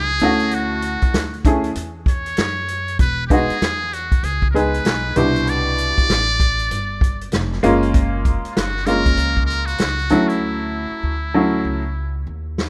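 A swung sixteenth-note groove from a punchy, rolled-off vintage drum kit carries this relaxed, warm jazz-hop fragment, where a buzzy, thin metal-muted trumpet plays a light-vibrato solo melody over a clear, worn, slightly detuned upright piano moving through major-ninth and major-seventh chords and a woody, growly pizzicato upright bass, set in a small-room, rough home-demo sound that closes with a drum fill from 10.4 seconds.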